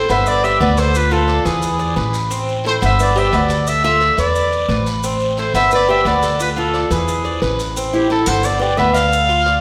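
Danceable and warm, this brief cut from a longer Cuban son and guajira piece in A minor moves at 176 BPM. A punchy, roomy trumpet sings the up-front solo melody with vibrato over a fingerpicked nylon-string guitar second line and the metallic, double-strung arpeggios of a picked Cuban tres. A woody, thumpy pizzicato upright bass sits up front, raspy guiro and grainy maracas sit in the background from 0.1 seconds, and the G, Dmadd9, E7 and Am7 cycle unfolds in the wet reverb of a recital hall.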